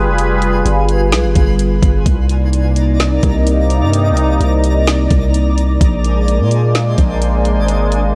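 A deep, sine-toned 808-style bass sits up front in this hazy, spacious cloud-rap excerpt, each long note striking with a fast attack before decaying into the low end. Around it, a sweeping resonant pad of detuned sawtooth and sine layers holds sustained chords, its slow attack and filter swell given movement by chorus and a sidechain pumping that breathes with the beat. From 0.2 seconds, a smooth, electronic R&B kit in a half-time feel carries a knocking kick, a woody snare and warm hi-hats, roughened by vintage 12-bit sampler grit with a tape-like glow. High above, a faint granular texture twinkles and sparkles with an FM, octave-up shimmer, fading in slowly and trailing off on a long release through its own reverb. The harmony drifts from G7b9 to Cm9 at 2.1 seconds and on to Bb9 at 5.8 seconds, all set in a digital ambience.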